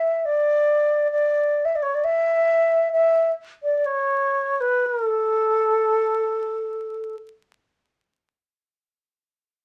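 In a rubato 3/4 that drifts between 42 and 68 BPM and slows from 2.0 to 8.5 seconds, this tender, pastoral Celtic folk fragment in A major, cut from a longer piece, features a solo baroque flute placed up front from the opening until 7.2 seconds, its woody, airy tone carrying soft attacks and expressive vibrato between A4 and E5 inside a reverberant studio ambience flecked with vinyl crackle.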